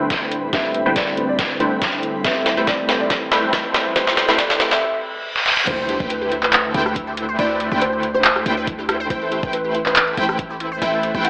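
A soft, felt-muted upright piano, an ethereal airy pad and a punchy, up-front supersaw stab with sidechain pumping open this playful, lush future bass excerpt in a half-time, lightly swung feel, joined by a dubstep kit with a deep snare and metallic hats, a knocking electronic kick, a dark, boxy grand piano melody from 0.5 seconds, and very quiet riser, reverse cymbal and impact effects that build to a drop at 5.7 seconds, where two bright, detuned unison plucks play arpeggios over a deep, boomy 808-style bass, the whole mix carrying a thin AM-radio tone.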